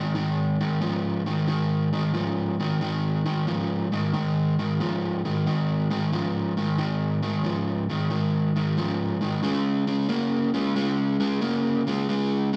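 Soulful and rollicking, this short cut from a longer blues piece moves at 91 BPM in 4/4 with a swung eighth-note feel. An electric semi-hollow guitar carries the solo role for the full 12.6 seconds, its picked tone overdriven with a warm, hollow-body character that sits up front in the mix. The playing stays in a low register, between Ab2 and Bb3, which gives it a gritty, chesty weight. The harmony rests on Ab5 from the start and shifts to Db5 at 9.4 seconds. Captured live in one room, the sound is wrapped in a moderate large-studio reverb that adds a roomy sense of space.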